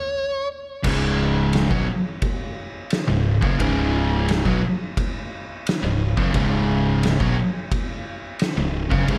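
A dark, compressed fuzz lead guitar, soaked in distortion and tape echo, sounds a single high note alone at the top of this brooding, sludgy stoner and doom metal excerpt, stopping at 0.5 seconds before a brief silence. At 0.8 seconds the full band crashes in on a C#5 power chord at a plodding 87 BPM in straight 4/4, tuned slightly flat to A4 = 436 Hz. An oversized, low-tuned acoustic drum kit sits up front with a punchy kick, fat snare, and dusky crash and ride cymbals, its saturated, gritty tone set in a bright stone room. Beneath it, a growling fingered electric bass runs through overdrive with a direct, amped edge, while a biting, double-tracked overdriven guitar drives the low riff. Two thick fuzz guitars also play the riff in the same low range, one mellow and set in the background, the other murky and very quiet, entering a moment later. Light reverb and small room ambience wrap the heavy, lumbering groove.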